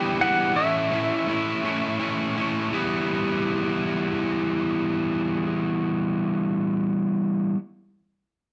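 A melancholic, cathartic slice of slow rock in 6/8, moving at 55 BPM in E dorian over Em7 and A before settling on Em. A bright, compressed, up-front distorted electric guitar carries a picked riff throughout, while a twangy, scooped lap steel with slide and digital delay sings a short high melody that ends at 2.0 seconds. A very quiet, reedy pedal harmonium breathes sustained chords only until 0.5 seconds, all set in a moderate large studio reverb.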